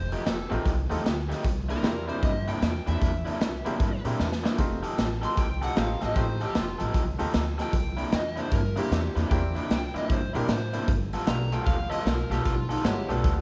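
Light reverb and studio ambience frame this gritty, laid-back electric blues shuffle, cut from a longer piece. Up front, a raw garage drum kit plays with a punchy kick, medium-tuned snare and hi-hat, saturated in a pumping stone room with a rolled-off top, and drops in a short fill at 4.2 seconds. A dark, overdriven slide guitar, fingered, carries a solo from the opening moment. Beneath it, a bright, picked electric guitar drives the overdriven riff, while a pizzicato upright bass with steel strings anchors the low end with a warm, woody tone. From 0.5 seconds, a brilliant upright piano sits in the background, polished and present with long sustain, as the harmony moves through F9, C9 and G9.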